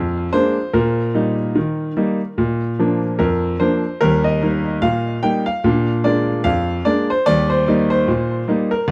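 A lilting two-beat pulse with a gentle swing on the sixteenth notes gives this short ragtime piano piece its jaunty, playful step at an easy, strolling pace. A clear grand piano plays alone throughout, spanning from deep bass notes up into the bright upper register, and it sits up front with a somewhat boxy character and short sustain. A touch of tape echo trails behind the piano, while a modest booth ambience keeps the overall sound dry and close, in the manner of a 1970s studio recording. The harmony circles between a dominant seventh and the home chord, and a fresh phrase begins at 4.0 s that returns to that same cadence before the clip ends at 8.9 s. Cut from a longer performance, it captures a brief, good-humored moment of old-time parlor piano.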